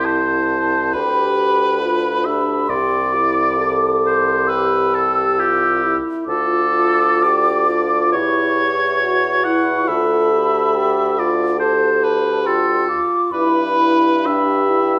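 The sound is a wet recital hall reverb that lends this slow romantic movement for wind quintet a tender, serene glow. It moves at 68 BPM in 4/4 in C major, with uneven beats and a rubato feel that lets each phrase breathe. This is an excerpt from a longer piece. The silver concert flute carries the melody high in its range with a mellow, hollow, airy tone and vibrato. The oboe sits up front with a clear second line. The dark clarinet keeps its smooth-topped accompaniment very quiet. The French horn joins the accompaniment at 1.0 seconds with light vibrato. Beneath them, the bassoon holds the bass, sounding distant and roomy, while the harmony drifts from C through diminished colours to Dm7 and settles on G6 at 13.3 seconds.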